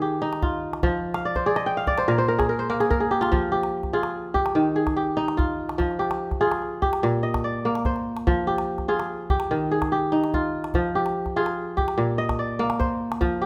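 Set in a moderate recital-hall reverb, this hypnotic, reflective excerpt of West African traditional string music in F dorian moves at 97 BPM in a straight 12/8, with a mellow, ringing, fingerpicked kora up front spinning crisp arpeggios over Fm, Eb and Bb chords and adding a fill from 1.1 to 3.3 seconds, while a deep, close and dry calabash keeps the percussion underneath.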